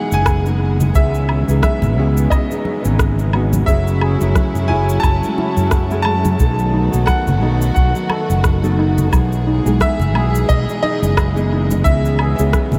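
Soaked in a huge ambient reverb, this dreamy sunset chillout excerpt drifts at 88 BPM in 4/4 with a gentle swing on the sixteenths, settled in F# dorian with a smooth, wistful mood. A clear baby grand piano carries the melody high in its register, its short-sustain notes trailing tape echo, while a thumb-plucked nylon-string guitar supplies classical-flavoured accompaniment in the background, also touched by tape echo. A dark chamber string section holds soft-attack sustained chords, bowed sul tasto with light vibrato for an intimate, close feel. Up front, a bright, growly fretless electric bass anchors the low end beside a deep analog-style electronic kick. Produced electronic cabasa, rim click and woodblock ride quietly on top, dry hard-handed congas sit in the background from 0.8 seconds, and a very quiet, shimmering steel pan joins with arpeggios at 4.0 seconds. The chords move from Emaj7 through C#m9, F#m9 and B7 before circling back to Emaj7 and C#m9.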